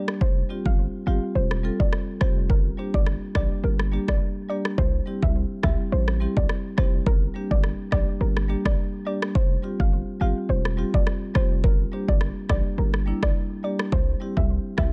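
A dry, close sound with little reverb frames this short dancehall cut, taken from a longer piece, moving at 105 BPM in 4/4 with a light 16th-note swing in G dorian. An electronic afro-pop drum kit sits up front from 0.1 seconds, its deep kick and rim click giving the groove a produced, bouncy drive. A hard-hitting 808-style bass enters at 0.2 seconds, punchy and heavy with a fast attack and decaying tail. Underneath, a marimba played with medium mallets carries the accompaniment with a warm tone and a sidechain pumping that breathes with the beat. A soft, round pluck with a dark, filtered edge carries the melody quietly, coloured by chorus and delay, as the harmony cycles through Fsus2, Gm and C for a hypnotic feel.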